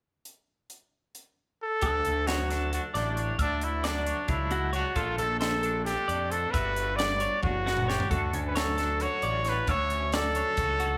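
A crisp fusion drum kit opens this math rock and midwest emo piece, its high-tuned snare and tight kick moving with hi-hat and toms in a fast, straight 7/8 at 267 BPM counted in eighths. A clear trumpet takes the melody at 1.6 s, up front and pop-styled with vibrato, giving the D major music a playful, wistful air. At 1.8 s the band fills out: a fuzz-laden picked electric bass, punchy and overdriven, sits prominently underneath, and two twelve-string electric guitars join. One guitar carries clean, compressed accompaniment with tremolo, while the other plays twangy arpeggios higher up through spring reverb, set in the background. The chords move from Dmaj7 through Bbmaj9 and Gmaj7, and a drum fill at 7.4 s leads back to Dmaj7, all captured as a band playing live in one room with light reverb.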